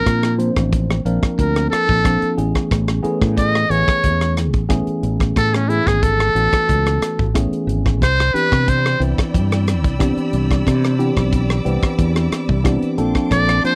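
A dry, close 1970s-style studio sound frames this bright, soaring electric jazz fusion excerpt, where an up-front trumpet with a metal mute and slapback echo sings a buzzy, breathy jazz solo with light vibrato and scooped notes over a clean tine electric piano through a combo amp with phaser, a round, dark fretless electric bass and an acoustic drum kit of hi-hat, punchy kick and rim click, while a soft-attack bowed string section enters at 8.0 seconds with expressive vibrato and the electric piano slips in a fill at 12.3 seconds just before the trumpet's brief return at 13.3 seconds.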